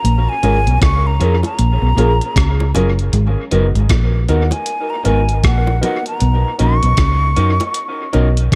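A swung lovers rock reggae groove rides on a thumpy, sampler-style drum machine of kick, hi-hat and rim click with gated reverb and dub echo, a round, foam-muted bass up front and a dark, fingered electric guitar riff in the background, joined at 0.4 seconds by grand piano accompaniment and slightly broken-up guitar stabs, both echoing, and at 0.8 seconds by very quiet low-tuned bongos, while a breathy, hollow flute with vibrato and tape echo carries a smooth, sweet melody over A#m7, G#m9 and Bmaj9 in this brief cut from a longer piece.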